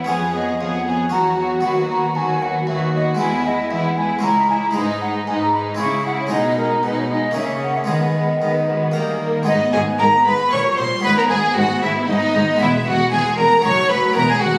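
Driving and dramatic, this baroque-style concerto movement with solo episodes moves at 116 BPM in 3/4, opening in B major before turning to G# minor from 3.2 s. A mellow, airy flute carries the melody with a straight tone alongside a hushed, sul tasto violin section in the background, while a focused second violin line sits up front over a round Flemish-style harpsichord, a smooth-topped viola section and an expressive cello section with portamento; a distant, lush double bass section joins at 9.5 s. The whole is bathed in a reverberant recital-hall acoustic, heard as if captured on a phone in the room, with club reverb and compression.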